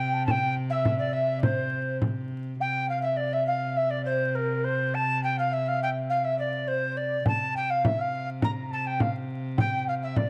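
A tenor recorder, a velvety synth lead and a viola da gamba drone on C3 sound together from the start of this rustic, festive medieval dance excerpt, set in C mixolydian at 103 BPM in a straight 2/4. The recorder carries the melody with an airy, chiffy wooden tone, a crisp attack, vibrato and a slapback echo. The sustained, detuned synth lead doubles that register as a mellow second line in the background, smoothed by chorus and portamento. Beneath them, the single bowed, fretted gamba holds a reedy, gut-string drone with light vibrato. A small, bright frame drum played with soft hands sits close and dry up front from 0.3 to 2.5 s, then returns at 7.3 s. Moderate spring reverb, a dark production and a layer of vinyl crackle give the recording an old-time patina.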